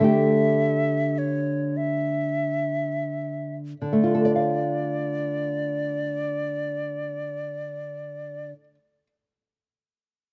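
In a free, rubato 4/4 that drifts between 40 and 56 BPM and slows through the opening 3.8 seconds, this melancholic, yearning romantic duo for flute and classical guitar unfolds in D minor, tuned to A4 = 438 Hz. The nylon-string guitar carries the accompaniment across its whole span, ranging from D3 to F5 with a small, thumb-plucked tone and a touch of slapback echo, and it sits slightly louder than its partner. Above it, a silver concert flute sings the melody between C#5 and E5, airy and metallic with lifted highs, a soft attack and expressive vibrato. The harmony rests on A5/D before settling onto D minor as a new section opens at 3.8 seconds. Both players are up front in a dry outdoor recording with little reverb and free of any room sound. The flute falls silent at 8.5 seconds, letting the guitar ring on alone until this cut from a longer piece ends at 9.1 seconds.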